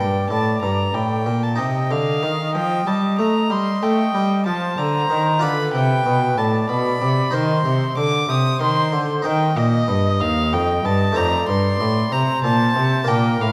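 This baroque-style sonata movement opens with all four players sounding together from the start: a clear oboe carrying the melody, a rich violin on a second line above it, a harpsichord filling in accompaniment, and a rich cello holding the bass. Set in 12/8 at 63 BPM in dotted quarters, the music feels dance-like and serene, moving through G minor, C minor, B diminished and back to C minor before landing on F7 at 11.2 seconds. The oboe sings with vibrato in a close, classical manner, while the violin and cello, both played with period gut-string tone, sit up front with a reedy edge, the cello adding a light vibrato. The harpsichord, a single set of plucked strings in Flemish style, gives a bright, mid-forward sparkle beneath them. A recital hall reverb with a 1.5-second decay surrounds the ensemble in a dark, wet glow across this 13.5-second section cut from a longer piece.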